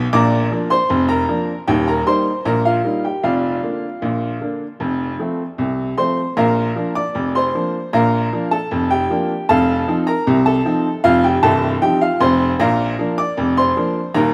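A rough home-demo sound wraps a boxy, woody upright piano, placed up front, in a lush hall reverb. This playful, jaunty ragtime piece in 2/4 with a straight feel has the solo piano spanning C1 to D6 throughout. The short excerpt is cut from a longer piece, and its chords settle back home at 12.6 seconds.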